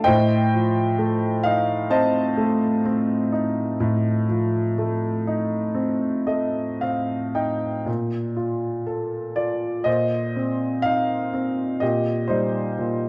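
Tender and peaceful, this short, rubato classical passage for solo grand piano drifts at roughly 54-65 BPM in 4/4, its clear, worn, open tone held up front with long sustain in a moderate concert hall reverb and a dark, warm production, spanning A2 to A5 from an opening F7/A through a fill at 5.8 s into a new section at 7.9 s that settles on Cm7/Bb, all tuned to A4 = 441 Hz.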